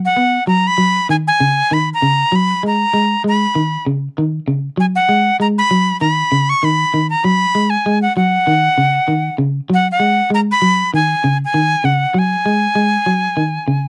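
A breathy, reedy jazz flute sits up front with a bright metal tone, tongued notes and vibrato, carrying the melody over a hypnotic, defiant afrobeat groove at 98 BPM in G# minor, swung on the sixteenths. Beneath it, a picked electric guitar, twangy and slightly broken-up, plays arpeggios on a single G#m7 chord through the whole cut of about 13.9 seconds. The sound is that of a dry, close 1970s-style studio with a touch of light reverb.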